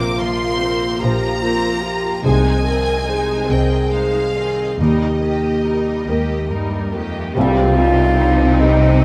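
Bittersweet and sorrowful, this slow, rubato cinematic orchestral excerpt in C minor and 6/8 at 48 BPM sets a lush, vibrato-rich violin melody with portamento over a softer second violin line, an intense viola section, focused cellos and smooth double basses, a dark French horn section holding sustained chords, a ringing, thumb-plucked harp, and a muted, thick-felt upright piano in the background, while a very quiet cymbal swell and tam-tam arrive at 4.8 seconds and a bright clarinet and airy, hollow flute join at 7.3 and 7.4 seconds for an accented arrival on C minor, all captured with close, detailed microphones and light reverb.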